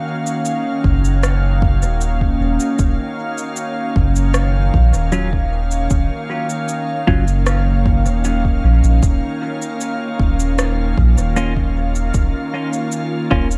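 A deep, round sub bass sits up front in this meditative, spacious ambient dub excerpt at 77 BPM in Eb minor, beneath a bright, organ-like pad whose chorused, reverberant chords move from Ebm9 to Bbm/Eb at 9.0 s, while a layered electronic kick thuds with tape-tinged depth in studio reverb, an electronic cabasa and rim click trail dub echo, and a clean, compressed electric guitar adds filtered, echoing stabs from 5.1 s, the whole mix steeped in an echo-heavy digital ambience.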